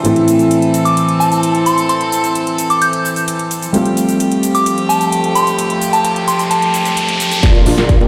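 A stone-walled room adds a lush hall wash to this short cut from a triumphant, anthemic festival progressive house track in a straight four. From the opening, a dark, mellow grand piano plays accompaniment with pumping sidechain and delay, while an up-front chamber string section holds bowed chords with a reedy, gut-string, period-style tone. A big-room dance kit of metallic hats, shaker and a punchy snare plays along with studio reverb. At 0.9 s a soft, pure FM bell enters high above with a gentle, decaying melody touched by chorus and delay, and a riser builds from 5.1 s. At 7.4 s the harmony lands on a new chord as a drum fill hits, a punchy, layered electronic kick arrives up front, huge detuned supersaw chords pulse in the background through a low-pass filter, and a thick, menacing saw bass rumbles very quietly beneath.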